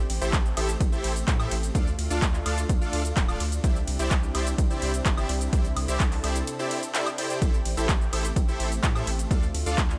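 A punchy, layered electronic kick sits up front in this triumphant, anthemic stretch of festival progressive house, cut from a longer piece, with an overdriven house kit of handclaps, hi-hat, ride cymbal, shaker and woodblock carrying a large-room sheen. Huge, bright detuned supersaw chords with lush chorus and tape echo pump with sidechain over a deep, thick saturated sub bass, while a warbling, vintage unison pad with slow attack and gritty sampler texture sits beneath on Am7, Dm and Cadd9. A brief break arrives at 6.5 seconds before the progression returns at 7.4 seconds, all set in a digital ambience.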